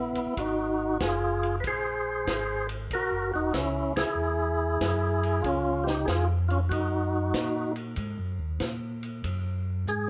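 Two tonewheel organs open together, one carrying a percussive, key-clicking melody through a slow rotary speaker while the other lays down a round, dark bass line, before a compact cocktail drum kit with a punchy kick, high-tuned snare and dark cymbals joins at 0.2 seconds in this greasy, swinging soul jazz organ trio at 95 BPM, played live in a large studio room over chords moving from Ab13 to Absus2, with a band accent at 3.9 seconds and a drum fill at 9.9 seconds.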